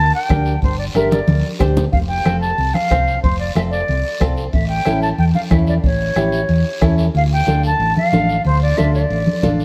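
Cumbia with a fiery, passionate drive, where a reedy, airy flute carries the melody up front over a dark, round hollow-body bass, a boxy fingerpicked flamenco guitar with finger squeak, a soft-beaten bombo that drops out at 7.0 seconds after a drum fill near 1.1 seconds, thick-skinned congas in the background and a raspy, saturated guiro, all set back in a moderate plate reverb in this short cut from a longer piece.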